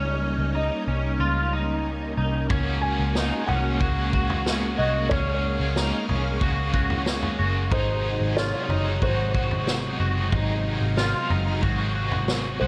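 A straight 4/4 pulse at 92 BPM carries this blissful, floating dream pop excerpt: a soft felt-muted upright piano melody with delay drifts over shimmering string-machine violin chords, a twangy, slightly broken-up electric guitar arpeggiates through ensemble chorus and delay, and a dark, foam-muted picked bass sits up front, until a punchy vintage drum kit of kick, snare and toms and a bright overdriven electric guitar with tremolo join at 2.5 s, the whole set in light reverb and studio ambience as the chords move from Eb7 to Gbadd9 to Ab7.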